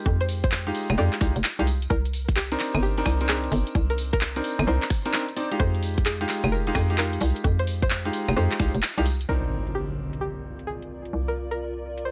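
A dry, gritty hardware recording in a digital ambience carries this moody, bouncy cut of two-step UK garage at 130 BPM in C minor, swung on the 16ths, where a hollow, knocking FM bass and a tight, up-front electronic kick drum sit under a garage kit of claves, finger snaps, handclaps and low-pass-filtered hi-hats, brilliant grand piano stabs over Fm9 and Cm9 chords, a twangy, chorused resonator pluck melody with analog delay, and a jingly tambourine in the background, until the kick drops out at 8.7 seconds, an impact hits at 9.3 seconds, and a cloudy granular pad with reverb and sidechain pumping drifts in at 10.4 seconds.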